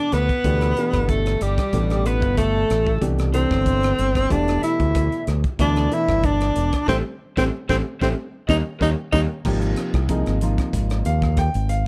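Slick and bright, this electric jazz fusion passage moves at 93 BPM in a straight 4/4, with a breathy tenor saxophone carrying the melody up front, its vibrato and scooped notes lifted by slapback echo. A lo-fi, double-tracked overdriven guitar plays a second line above it, while a boxy grand piano with deep low end supplies the accompaniment, a direct, up-front fingered electric bass anchors the bottom, and a crisp drum kit with a high-tuned snare and punchy kick sounds in a small, pumping room. From 6.9 seconds the band hits accents, with a drum fill at 8.8 seconds; the saxophone and guitar stop at 9.2 seconds, leaving piano, bass and drums to move from Eb7 into Ab69.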